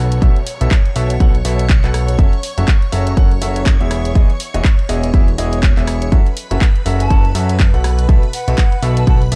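Soulful and bittersweet, this dark piano house fragment, cut from a longer piece, rides a punchy, up-front electronic kick and a tape-warm house kit of handclaps, hi-hat and rim click, while a fat, sidechain-pumped analog bass, a bright concert grand piano riff with audible action noise and delay, and shimmering vintage string-machine violins holding pumping chords fill out the groove, a very quiet downlifter sounds until 2.2 s, and a breathy, distant jazz flute with vibrato and delay takes the melody from 7.0 s.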